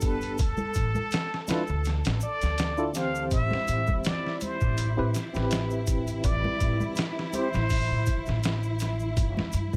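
Dark and smoky, this trip hop piece moves at 82 BPM in 4/4 with a light sixteenth-note swing, sitting in A minor as the harmony shifts from Dsus2 to Am7. A sampler-style drum kit sits up front, pitched down, compressed and gritty, with a thumpy kick, a medium-tuned snare and hi-hat, while ringing egg shaker and congas add close acoustic colour underneath. A woody, pizzicato upright bass anchors the low end, and a clean tine electric piano supplies accompaniment through tremolo and tape echo until 7.5 seconds. Over this, a breathy plunger-muted trumpet carries a jazz-style solo melody with wah-wah inflections, scooped notes and light vibrato, its tape echo trailing behind. A lush, bowed string section holds sustained chords, and from 3.8 seconds a very quiet, flickering granular texture drifts in with a slow attack and long release, all inside a small room ambience.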